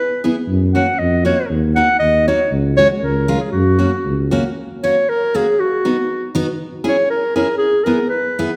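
A mellow, soft-attacked clarinet carries the melody up front in this festive, bouncy alpine folk excerpt for dance band, moving in a straight 2/4 at 118 BPM in F# major. A bright, full-bodied picked steel-string acoustic guitar supplies accompaniment underneath, while a dark tuba with light vibrato holds the bass from 0.5 to 4.4 seconds before dropping out. The reverb of a recital hall gives the whole short passage a spacious, ringing air as the chords drift from F# through D#m and C# toward B, C#m and E.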